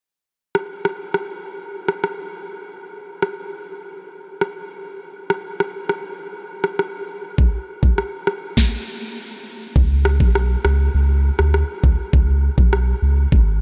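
Lightly reverberant and wrapped in digital ambience, this sultry, hypnotic dancehall excerpt opens at 0.6 seconds on an up-front electronic island pop drum kit with a knocking kick, rim clicks and a sharp snare, pauses for a stop at 8.6 seconds, then returns at 9.8 seconds joined by a deep, dark, round analog bass with a fast attack, sustained notes and a filter sweep.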